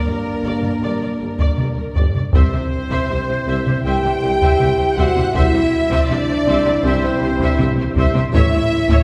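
This heroic, shadowy slice of epic orchestral film music opens with strings, flutes and brass sounding together. One violin section carries the melody with a smooth, vibrato-rich tone, while a clearer, more intense violin section and a mellow, hollow flute group trace a second line in the same upper register. Beneath them, a lush viola section fills in the accompaniment, and dark French horns hold soft-edged sustained chords with a tight trombone section. Cellos, double basses and a solo tuba anchor the bass, and the basses and tuba drop out at 8.4 seconds. A taiko ensemble struck with heavy sticks enters at 0.6 seconds as the loudest voice in the mix. The harmony moves from G minor to C and finally to A, and a generous concert-hall reverb gives this short cut from a longer piece a spacious, cathedral-like depth.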